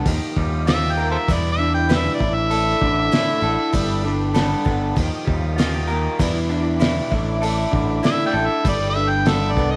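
An overdriven, gritty harmonica carries the melody up front with light vibrato and tongue slaps, playing from 0.7 to 4.1 seconds and returning at 8.1 seconds in this hopeful, nostalgic slice of folk and heartland rock. Beneath it, a shimmering, octave-doubled twelve-string acoustic guitar picks the accompaniment, a dark, slightly broken-up electric guitar plays a lo-fi riff, and a bright, direct electric bass sits up front. A muffled, cloth-damped drum kit with a fat snare and tight kick keeps a straight beat, while a veiled, con sordino string section holds lush, very quiet chords in the distance.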